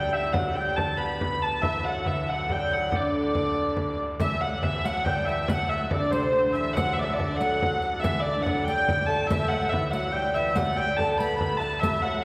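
Medieval dance in a festive, rustic 6/8 at 94 BPM in D mixolydian, where a dark, woody, wheel-bowed hurdy-gurdy carries the melody up front over a delicate fingerpicked lute second line with double strings, a brilliant full-organ drone with majestic mixtures, and a close, dry frame drum, and at 4.2 s an airy, chiffy tenor recorder with unsteady vibrato adds a second line in the background alongside soft-handed riq jingles, all set in a concert hall reverb heard from further back in the room.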